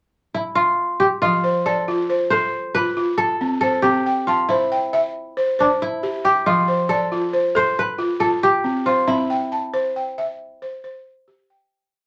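A ringing, crisp fingerpicked kora opens at 0.3 seconds with a hypnotic, motif-based melody of call phrases in F lydian at 92 BPM in a straight 12/8, joined at 1.2 seconds by a woody, buzzing balafon struck with rubber mallets in an interlocking arpeggiated ostinato, both up front in a club reverb as this short West African traditional piece moves between F and C before fading out from 9.1 seconds.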